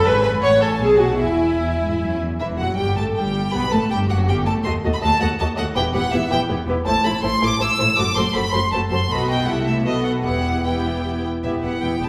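Lively and cheerful, this quick classical-period string orchestra movement in E minor moves at 160 BPM in a rubato 3/4, with an up-front, focused violin section carrying the melody over a smooth-topped second violin line, an even viola accompaniment, background cellos and distant double basses, all bowed with vibrato in a reverberant recital hall.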